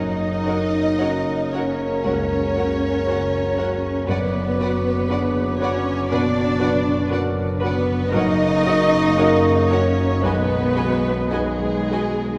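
Rubato in 4/4 at 47-60 BPM, this passionate, lush romantic excerpt for piano and orchestra in F# major sets a grand piano, with audible action noise and long sustain, beside a focused chamber violin section on the melody, while a pure flute, a vintage-toned cor anglais and a dark clarinet entering at 2.1 s carry second lines with a very quiet, smooth-topped higher violin section, a mellow bassoon and faint violas accompany, hushed horn and trombone sections hold chords, and full-bodied cellos and close double basses ground the bass, all heard in the long wet reverb of a church or concert hall.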